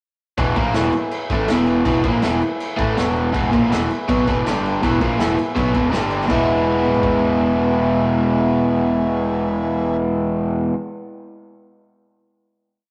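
Garage rock with a swaggering, raw attitude, built on an up-front, double-tracked power-chord riff from a bright overdriven electric guitar with spring reverb, doubled by a growling, overdriven picked bass driving in eighth notes. A buzzy vintage combo organ holds triad chords with light vibrato in the background, while a gritty, punchy garage drum kit with dark cymbals and a rolled-off top pounds out a big rock groove until 7.1 seconds. At 6.3 seconds the riff gives way to a final chord, all captured in a rough rehearsal-room sound with tube saturation and a small, wet room.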